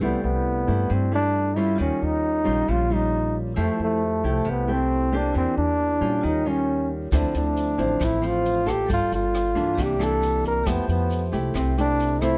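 Straight 4/4 bossa nova at 135 BPM in C major, sunny and relaxed, with a warm trombone singing the melody up front with light vibrato over thumb-plucked classical nylon-string guitar, a woody pizzicato upright bass and a dark, ringing vibraphone in the background, joined at 7.1 seconds by a compact cocktail drum kit with a punchy kick, hi-hat and rim click and a grainy, distant tube shaker, in a close, detailed recording with little reverb, cut from a longer piece.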